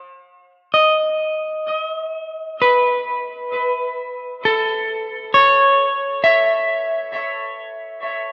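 In a slow, straight 4/4 at 66 BPM, this luminous, warm ambient excerpt in A lydian features a lone, slightly broken-up electric guitar that enters at 0.7 s and sits up front, its picked notes warbling with pitch drift and trailing into a diffuse ambient delay, with an A chord arriving at 2.6 s in a dreamy mix soaked in plate reverb.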